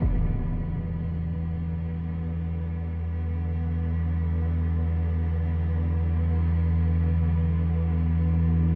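A deep, rumbling, wave-folded drone with a warbling vintage character sits up front across this 8.8-second excerpt of dark ambient in free time and E minor, while a lush symphonic cello section bowing sustained chords on Em7 fades in far beneath it, all bathed in a cavernous cathedral reverb that leaves the mood ominous and unsettling.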